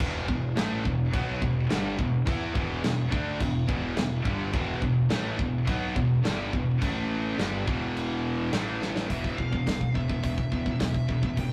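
A rough rehearsal-room recording with saturated grit and a small-room reverb carries this relentless, aggressive heavy metal excerpt in E minor at 106 BPM, where an up-front, bright high-gain guitar riff sits alongside a scooped high-gain guitar in the background, a very quiet double-tracked sludgy guitar and a punchy fuzz bass, over an up-front acoustic kit with a punchy kick, medium-tuned snare, hi-hat, crash and china under a rolled-off top, until a drum fill at 8.8 seconds hands over at 9.1 seconds to a new section, where the sludgy guitar drops out and a distorted high-gain lead guitar melody enters high above the riffs.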